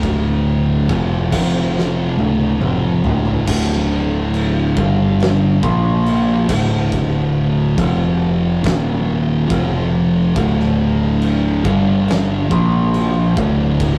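A rough rehearsal-room recording with saturated warmth and a small room's reverb frames this sludgy, ominous stoner and doom metal excerpt, moving at a slow 70 BPM in D minor with tuning set to A4 = 436 Hz. Two thick, distorted fuzz guitars play the riff, one up front and one set back, over a growling, overdriven bass with tube saturation and an oversized, low-tuned acoustic kit with a punchy kick, fat snare and dark cymbals; the kit plays a fill from 1.8 to 3.5 seconds before the riff moves into its second part. A mellow organ-like drone of sustained chords, barely audible, joins at 0.6 seconds.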